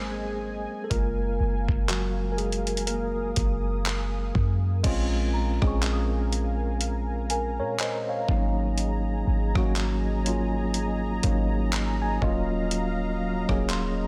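Over a swung sixteenth-note groove in 4/4, this moody, sensual contemporary R&B excerpt opens with a mellow tine electric piano solo over a smooth, detuned sawtooth pad with chorus and a deep, boomy 808-style bass, before a gritty, compressed sampler-style drum kit with a thumpy kick, hi-hat, rim click, handclaps and crash enters at 0.9 seconds, a delicate, bell-like celesta with digital delay drifts in the background from 5.3 seconds, and the electric piano adds a fill at 11.2 seconds, all in a dry, up-front mix.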